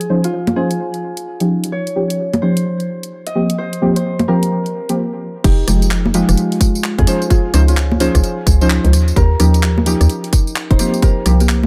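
Soulful, late-night two-step UK garage with a swung shuffle, where a ringing thumb-plucked Celtic harp melody trailing dub echo and deep, dark chord stabs coloured by chorus, cassette tape and tape echo ride over a garage kit of congas, handclaps, warm hi-hats, rim clicks, tambourine and crash, until a brief break gives way at 5.4 s to a drop that brings in a hollow, bouncy FM bass and a tight, up-front electronic kick.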